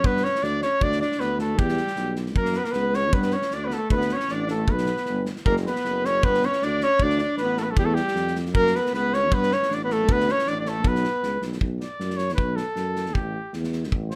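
A clear, classical-style flugelhorn carries the melody up front with plate reverb in this bittersweet, virtuosic excerpt from a longer Balkan brass band piece, set in B minor at 156 BPM in a swung 2/4. An alto saxophone with light vibrato plays a second line until 11.4 seconds, while a roomy tuba with vibrato holds the bass and an acoustic drum kit drives things with a tight kick and a medium-tuned snare in a small, pumping room. After two passes through the opening theme, the flugelhorn takes a solo from 11.6 seconds over a shift to B minor.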